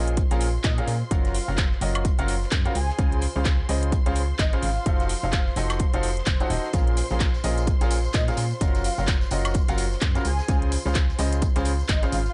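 Piano house at 128 BPM in Bb minor, energetic and soulful, with a swung 16th feel. A bright, woody upright piano riff with analog delay and a round, punchy FM bass pump against a tape-warm electronic kick, while a layered house kit adds handclaps, metallic hats and woodblock, and a very quiet acoustic studio kit tucks hi-hat and snare underneath. A breathy, flute-like synth lead with chorus and vibrato floats alongside lush, dark violin chords in the background, a close, dry tambourine joins at 6.7 s, and the mix has a gritty, dry small-room character over chords moving from Bbm7 through Gbmaj7, Dbmaj7 and F7b9.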